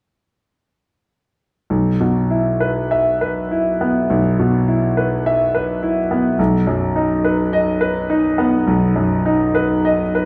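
A bright concert grand piano carries this tender classical fragment, taken from a longer piece, entering at 1.7 seconds and playing through to 10.3 seconds. Its tone is brilliant and natural, sitting up front with a deep bass reaching down to B1 and an upper register extending as high as E5. The piano serves as accompaniment at an unhurried 49 to 54 BPM in 4/4, its rubato phrasing giving the passage a warm, breathing feel. The harmony rests on an E5 chord over B before settling onto B at 6.4 seconds. A recital hall's reverb, lasting about 1.5 seconds, wraps the instrument in a generous, resonant space.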